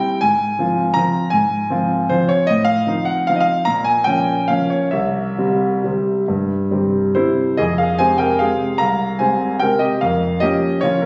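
Classical piano waltz in F minor and 3/4, nostalgic and elegant, moving with a rubato lilt between 127 and 165 BPM as a solo grand piano with a warm, natural, up-front tone ranges from C2 to Bb5, shifting into a new passage at 7.6 s, all set in moderate scoring-stage reverb and captured on a phone in the room with added studio reverb and compression in this short excerpt cut from a longer piece.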